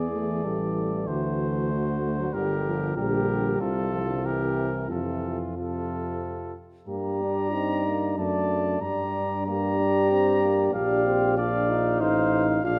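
Classical brass quintet music in a warm, triumphant three-beat metre, cut from a longer piece, where a smooth-topped trumpet with light vibrato carries the melody over a mellow flugelhorn second line, a dark, distant French horn and a close-miked trombone sit in the background, and an up-front, roomy tuba with its own light vibrato anchors the bass, set in a moderate recital hall reverb as the music turns to a new section at 6.9 s.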